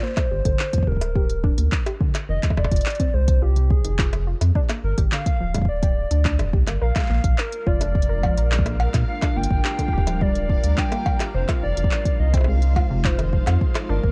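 IDM with an eerie, glitchy mood, set on worn, warbling old tape with pitch drift and little reverb. A soft-attack square-and-saw lead carries the melody with vibrato, chorus and tape echo over dusty, detuned pluck arpeggios, a round sine sub bass and a deep kick up front, while an electronic kit of bongos, cowbell, handclaps and smooth hi-hats fills out the groove. A bubbling stepped-filter texture sits in the background from 6.8 seconds, and a blurred, granular cloud pad with 12-bit grit adds sustained chords from 7.6 seconds.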